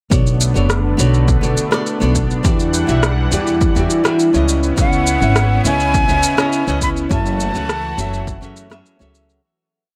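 A breathy jazz flute enters at 4.8 s with an expressive, vibrato-laced motif over this smooth, relaxed sunset chillout piece in B minor at 103 BPM, its delayed tone floating above a fingerpicked flamenco guitar playing dotted-rhythm chords in spread voicings through digital delay. A woody, dark upright bass sits up front with a dotted-rhythm pizzicato line, while a lush, warbling sawtooth unison pad holds bright chorused chords and an overdriven electronic kick and a shaker and rim click lay down a light lounge beat. The kick stops at 8.4 s inside a fade-out that begins at 6.3 s, and the chords move from Bm9 through Em9 and C#m9 to F#m9 in a small room with light reverb.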